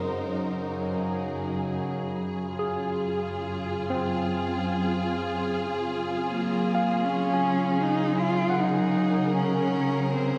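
At a straight 78 BPM in 4/4, this serene ambient passage in Gb lydian, cut from a longer piece, rests on lush, bowed symphonic strings holding sustained chords up front with soft attacks and vibrato, while a bright, barky tine electric piano, lightly overdriven through a combo amp, spins arpeggios through shimmer reverb and tape echo. A sawtooth-and-sine drone with moving, resonant overtones and chorus hums beneath until 6.3 seconds, when the harmony shifts from Fm7/Gb to Gbmaj7 and a dark, smooth-topped solo cello takes the melody with expressive portamento. The whole sits in a wet concert hall with a 2.0-second decay.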